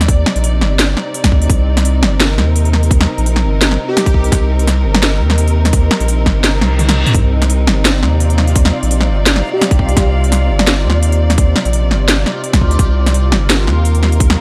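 A half-time drum and bass groove at 170 BPM with a light 16th-note swing drives this dark, heavy passage in C minor from a longer piece, where a tight, tape-warm electronic kick and an up-front kit of cracking snare, crisp hats and toms sit over a thick, saturated sub bass, while a lush bowed string section holds a Cmadd9 chord with sidechain pumping, an airy lead in the background adds brief chorused, dub-echoed phrases from 3.9 seconds, a reverse cymbal and a drum fill arrive at 6.6 seconds as the kick briefly drops out, and a bright, granular backwards texture enters at 8.2 seconds.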